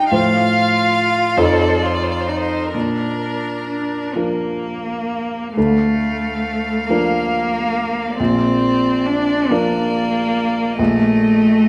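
A wet concert hall reverb, lasting 1.7 seconds, surrounds this short excerpt cut from a longer piece, a slow, serene and lyrical classical movement for piano trio in Bb major, moving in a rubato 6/8 at about 41-49 dotted-quarter beats per minute. A rich, distant violin carries the melody with smooth, even vibrato, while an up-front cello with a clear tone shapes a second line beneath it, also bowed with vibrato. A clear, natural grand piano sits up front as accompaniment, spanning from deep in the bass to the middle register, and the harmony settles onto Bb at 2.7 seconds before a new section begins at 5.6 seconds.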